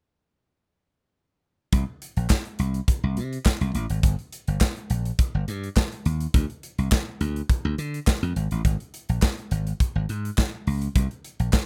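A dry, rough home-demo sound frames this short cut from a longer early-eighties boogie funk piece, funky and late-night in mood with a straight 4/4 feel. A bright, punchy slap bass sits up front, its electric tone direct and amped, while an airy, polished studio drum kit pairs a medium-tuned snare and punchy kick with hi-hat and handclaps. Both parts enter together at 1.7 seconds and carry the single section through to the close, the bass stopping at 11.5 seconds and the drums at about 11.7 seconds.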